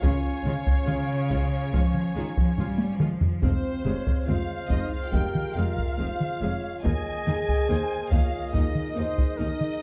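Taiko drums struck with hard sticks sit up front and drive this relentless, dark cinematic film-score excerpt at a straight 70 BPM in 4/4, with a fill from 2.6 to 3.4 seconds, as the harmony moves from Db to F minor to Ebsus4. A lush violin section carries the melody with vibrato, shadowed by a second violin line and an airy, mellow metal flute, while violas supply expressive accompaniment and a close woodwind section and a French horn section with a soft attack hold sustained chords. Rich cellos and double basses anchor the bass, and the whole orchestra sits in a moderate concert hall reverb with a dark, warm production.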